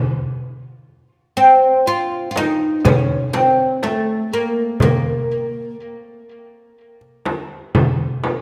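Longing and soulful, this short cut from a longer piece of Arabic maqam ensemble music moves at 122 BPM in eighths through a straight 10/8 metre. The oud carries the melody, entering at 1.4 seconds with a woody, plectrum-plucked tone from its fretless, doubled strings, sitting up front between A3 and F4 and touched by tape echo. A crisp, small metal-shell darbuka joins at 2.1 seconds, sounding high, close and dry. A large frame drum follows at 2.4 seconds, its deep, vintage, band-limited tone placed up front. The ensemble sits in a recital hall with a lingering reverb of about 1.5 seconds.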